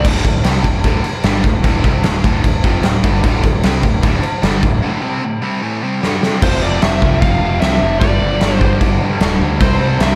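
Swaggering and powerful, this hard rock passage, cut from a longer piece, drives along at 151 BPM in a straight 4/4. A big acoustic drum kit sits up front with a punchy kick, a medium-tuned snare and crash cymbal, its dark, smooth tone set in a bright stone room. Two rhythm guitars play riffs in the background, one crunchy and overdriven with a warm edge, the other tight and bright with distortion and slapback echo. Underneath, a fuzzy, overdriven picked electric bass holds down the low end. The chords move from D5 to F5, G5 and finally C. A biting, overdriven lead guitar with slapback echo sounds briefly at the very start, and after a break at 4.8 seconds and a drum fill at 6.0, it returns to take up the melody from 6.4 seconds, all within light reverb and small room ambience.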